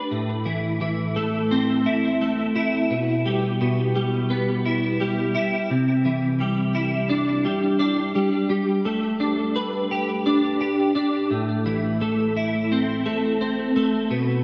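Soaked in a lush hall reverb, this dreamy, cinematic rock piece features a lone twelve-string electric guitar, bright, clean and twangy, sitting up front with ensemble chorus and delay. At 86 BPM in A minor, the brooding picked part moves from Am to Em/B before a build-up starts at 5.7 seconds, passing through Cadd9 and Gadd9 and returning to Am.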